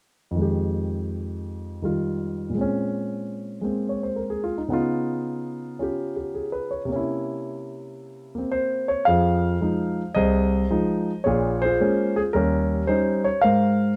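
A concert grand piano enters at 0.3 s and carries this moody, smoky solo jazz fragment, cut from a longer piece, entirely by itself. The tune sits in F minor at 110 BPM in 4/4, with a 69% swing on the eighth notes and tuning set to A4 = 441 Hz. The piano spans Bb1 to F5, with a warm tone, deep bass and short sustain, placed up front in a dark production with light reverb. The opening passage moves through Fm9, Bbm9, Db9 and C7b9. At 9.1 s a second passage begins with Fm7, Bbm7 and Eb7 before settling on Abadd9 as the fragment closes at 14.0 s.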